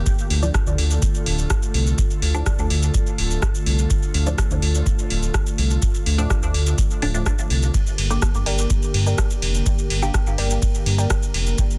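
A dry, dense and heavily limited mix frames this cavernous, hazy dub techno excerpt at 125 BPM in 4/4, where a deep electronic kick and a booming analog drum machine with metallic hi-hats, ride cymbal, rim click, shaker and a softly clipped snare drive beneath a round, dark analog bass and an airy, breathy chorused pad, both pumping to the sidechain, while a muted, full-bodied filtered chord stab with phaser and dub echo pulses through the Dm harmony before it shifts to Gm at 7.7 s, and a warbly, dusty, nasal pluck riff with chorus and dub echo slips in quietly in the background at 8.5 s.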